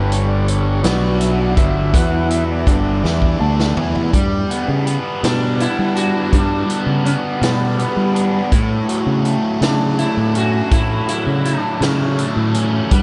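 Soaked in a vast, dreamy reverb with a dulled top end, this kaleidoscopic, hypnotic psychedelic rock fragment in 6/8 opens with a reedy, heavily vibrato-laden overdriven combo organ solo over an up-front, compressed, double-tracked fuzz guitar riff with phaser, a growling, bright overdriven fingered bass and a punchy, natural-sounding vintage drum kit whose fill closes the opening at 4.1 seconds, after which a buzzing, shimmering plectrum-plucked sitar melody with tape echo enters at 5.2 seconds.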